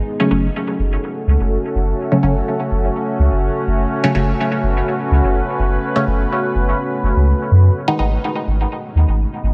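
Cavernous and nocturnal, this dub techno excerpt sets a dark, chorused ambient pad of slow-blooming sustained chords over a round, soft sub bass, while muted, detuned chord stabs with a filter sweep, phaser, gritty 12-bit sampler texture and dub echo pulse from 0.2 to 8.2 seconds as the harmony moves from F#m to G#m beneath light reverb.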